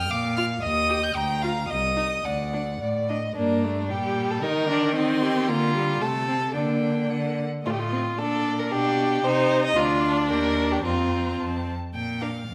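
A quick classical-period movement for string quartet, this short stretch cut from a longer piece feels dramatic and stormy, its pulse in two pushed and pulled with rubato. The first violin carries the melody high above the group with a rich, expressive tone, singing with vibrato, a soft attack and gliding portamento, though it sits lower in the mix than its partners. Beneath it, the second violin spins a smooth, even second line with a warm sound placed up front, while the viola fills in the accompaniment with a focused, vibrato-laden tone. The cello anchors the bass with a clear, present voice, entering at 0.1 s just after the violins, with the viola joining at 0.4 s. The harmony darkens into the minor around 3.4 s as a new section begins, then brightens toward the relative major from 7.6 s and settles on a Bb chord at 11.9 s, all within the generous, wet reverb of a recital hall.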